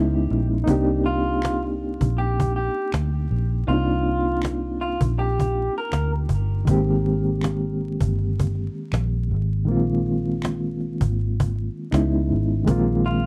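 Lo-fi hip hop with a nostalgic, melancholic lean, where a reedy electric piano with fast tremolo and a round, foam-muted bass sit up front from the start, a close, dry, snappy cajon enters at 0.7 seconds, a slightly broken-up guitar carries the melody through plate reverb and analog delay from 1.1 to 6.1 seconds, and a soft finger snap lingers in the background, all wrapped in a dark production with vinyl crackle over lush ninth chords.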